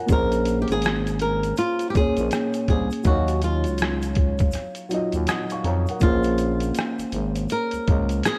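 A bright, fingerpicked flamenco guitar carries the melody up front in this reflective, hazy lo-fi hip hop excerpt at 81 BPM in Bb minor with swung 16ths, over a soft, felt-muted upright piano with cassette tape colour, a growling, thick FM bass, a compressed, pitched-down trip hop sampler-style drum kit with a thumpy kick, hi-hat and rim click, and a grainy tube shaker in the background, set in light reverb as the chords move from Bbm9 to Ebm9, with a break at 4.5 seconds before Bbm9 returns at 6.0 seconds.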